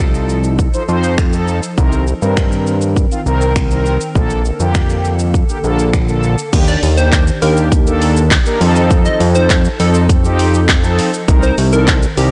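Confident, energetic dance-pop at 101 BPM opens with a punchy, tape-warm house drum kit of kick, handclaps, finger snaps, hi-hat, shaker and crash, a fat, saturated analog bass and mellow, detuned synth brass pumping with the sidechain over F7, Cm7 and Bbmaj7, joined at 0.4 s by a very quiet, glassy FM pad, before the drop arrives at 6.5 s and a catchy, plucky unison lead with dub echo enters at 6.7 s, all heard through light reverb in a blown-out, overdriven recording cut from a longer piece.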